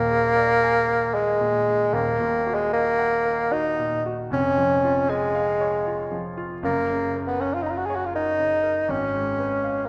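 Yearning and elegiac, this brief excerpt of a romantic classical duo unfolds in a flexible, rubato triple metre. A warm bassoon with light vibrato carries the melody up front and present throughout. Beneath it, a clear yet worn concert grand piano provides accompaniment with deep bass, and the pair sit in the wet reverb of a recital hall.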